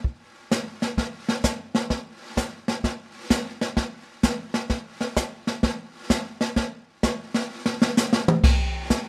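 Playful and swinging, this short country excerpt moves at 129 BPM in 4/4 with swung eighths, carried entirely by a jazz brush drum kit playing brushed snare, hi-hat, crash cymbal, toms, snare and kick. The kit sounds dark and smooth, with dark cymbals, a medium-tuned snare, a boomy kick and a rolled-off top, and it sits up front in a moderate studio reverb. A drum fill arrives at 7.5 seconds and lasts until 8.4 seconds.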